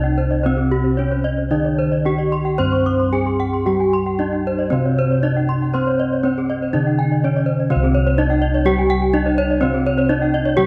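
Brilliant and ceremonial, this short cut from a longer Balinese gamelan piece in C pelog moves at 112-125 BPM in a straight 4/4, with an up-front bronze metallophone carrying a dark, smooth melody shimmering with paired-tuning beats, a lower metallophone struck with a wooden mallet giving ringing accompaniment, two bright horn-mallet metallophones spinning high arpeggios (one close-miked, dry and full), and round, beating bossed gongs with a boxy small-room tone holding the bass, all set in a wet concert hall reverb with a dark, warm production, shifting into a new section at 7.7 seconds.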